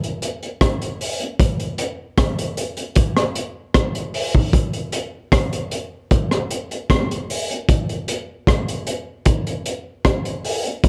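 Reggae drum excerpt at 76 BPM in a straight 4/4, carrying a meditative, serious mood. A crunchy breakbeat kit plays for the full 10.9 seconds, its hi-hat, tight kick and rim click sounding dark, gritty and saturated, with a rolled-off top and an up-front placement in a studio room. Light reverb surrounds the kit, and the excerpt moves into a new section at 4.5 seconds.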